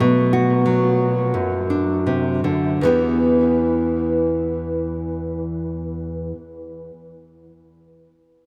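Soaked in a huge, dreamy ambient reverb, this haunting and intimate solo folk passage, cut from a longer piece, features a fingerpicked nylon-string guitar, classical in tone and up front with delay, playing rubato in E minor at around 78-95 BPM, slowing down over an opening Bm7 before moving to Em at 2.8 seconds.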